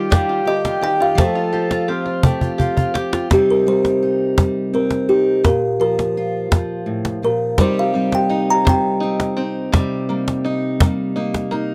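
At 84 BPM in a straight 3/4, this haunting, intimate acoustic folk piece in C dorian unfolds like a small band gathered close, and it is cut from a longer piece. A woody, up-front cajon with faint snares and hard hands keeps time throughout and plays a drum fill from 2.4 to 3.3 seconds. Fingerpicked steel-string acoustic guitar with fresh strings and audible finger squeak provides bright accompaniment, while a twangy, plunky open-back banjo adds arpeggios that drop out after the opening and return at 7.6 seconds. In the first few seconds, a reedy, dark accordion hums a smooth second line over Ebadd9 and Fadd9 chords before falling away at 3.3 seconds. The plucked kalimba, hollow and ringing with a soft fingertip touch, carries the melody from the start, and from there it takes a solo over Cm, Bb5 and Cm7 harmony. The dry, close sound recalls a 1970s studio, touched with light reverb.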